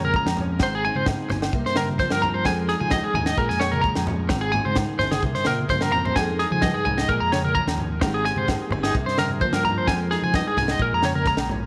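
A twangy, slightly broken-up electric guitar sits up front, spinning compressed arpeggios through tremolo and tape echo in this bittersweet highlife guitar-band excerpt in F minor at 129 BPM. Underneath, a picked steel-string acoustic guitar with audible finger squeak plays accompaniment, a round, punchy fingered bass anchors the low end, and a tight funk kit with a high-tuned snare adds a brief fill at 5.7 seconds. Low-tuned, thick-skinned congas and ringing agogo bells sit in the background, all within a moderate echo-chamber reverb as the warm cycle of Bbm7, Abmaj7, C7sus4 and Fm7 repeats.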